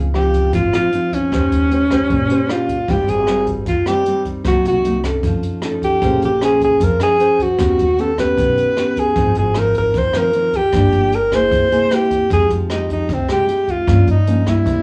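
A woody pizzicato upright bass and a thumb-plucked classical nylon-string guitar open this smooth, wistful excerpt, joined a moment later by a straight 4/4 bossa nova groove from a brushed jazz kit, with its boomy kick, rim click and hi-hat. Together they support a breathy, close-miked alto saxophone singing up front with vibrato. The guitar and saxophone both carry a cassette tape tint and plate reverb, and the whole home recording has a small room ambience as the chords move from Dbmaj9 to Gm7b5.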